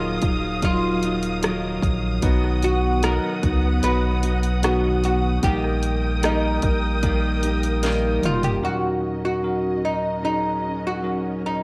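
A woody, double-strung oud carries the melody of this heartbroken pop ballad excerpt, its bright plectrum-plucked tone trailed by a slapback echo. Beneath it, a bell-like tine electric piano plays clean, direct accompaniment, while a dark studio string section holds lush, bowed chords with vibrato and a soft attack from a distance. A fingerpicked steel-string acoustic guitar adds full-bodied arpeggios in the background. A round sine sub bass sits up front under a punchy, overdriven house drum kit with cracking snare, bright hats, rim clicks and toms. The kit plays a fill from 7.8 seconds, and drums and bass drop out at 8.6 seconds, leaving the oud, piano, strings and guitar to carry the longing mood, with the guitar falling away at 9.1 seconds under light digital ambience.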